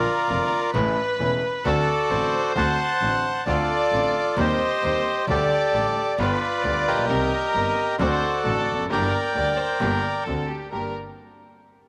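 A reedy, dark bandoneon leads this dramatic, sultry rubato tango from the outset, alongside a chamber violin section with a biting second line, a clear concert grand piano accompanying with deep bass, a lush, very quiet symphonic string section playing stabs, and a nasal, earthy bowed double bass with transformer saturation, all set in light studio reverb, until the bandoneon stops at 10.2 seconds.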